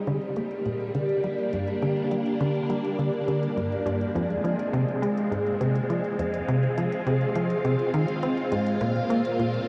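Hypnotic and expansive, this short cut from a longer piece of ambient, sequencer-driven space music moves at 103 BPM in G phrygian, with chords shifting from Gm to Fm and landing on Bbsus2 at 8.8 seconds. A swirling, phased string machine holds bright, vintage chords up front beside a tight, punchy sequencer bass riff whose ring-modulated sawtooth and square-wave plucks pass through tape echo. A very quiet, bubbling texture of detuned, resonant filter steps drifts beneath, while clicky electronic hats and blips fade in from the background, all bathed in a huge, wet reverb and the worn, warbling pitch drift of old cassette tape.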